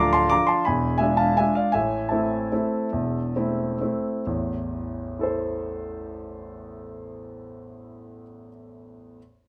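Nostalgic and elegant, this brief classical piano waltz in A minor moves in 3/4 with a flexible rubato feel, its tempo ranging from 123 to 182 BPM and slowing down between 1.2 and 4.3 seconds. A solo grand piano, warm, polished and up front, spans a range from D1 to D6, passing from Bb/D through E7b9 to settle on Am. Light reverb gives the room a gentle sense of space, and the recording is cut from a longer piece, closing at 9.2 seconds.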